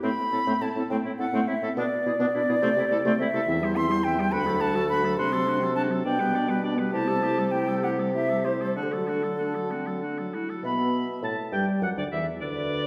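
This is a quick classical-period movement for wind quintet in 6/8, cut from a longer piece, moving at 63-72 BPM in dotted quarters with a flexible, rubato feel and a cheerful, spirited mood. The silver concert flute carries the melody up front with an airy, mellow tone, vibrato and soft, expressive attacks. A clear oboe with light vibrato adds a second line, while a dark French horn and a mellow clarinet fill in the accompaniment. Beneath them a punchy bassoon, also placed forward with light vibrato, holds the bass. All five play throughout the 12.9 seconds, moving through a harmony that starts on A minor and passes through D and G/B before a new section begins at 10.6 seconds on Asus2 and turns to D. The ensemble sounds as if heard from further back in a recital hall, with a wet reverb lingering around the instruments.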